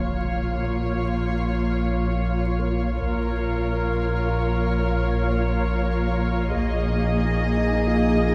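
A cinematic suspense score in Bb minor at 68 BPM, this uneasy, eerie fragment floats a soft, sul tasto violin section melody over dark viola, close cello and double bass sections, a punchy sine sub bass drone with a pitch-drop attack, twinkling granular chords with an octave-up shimmer, a very quiet mellow vintage grand piano and a huge, bright but very quiet impact that sounds until 3.0 s, all set back in a wet scoring-stage reverb with vinyl crackle as Bbm shifts to Absus2/Bb at 6.5 s.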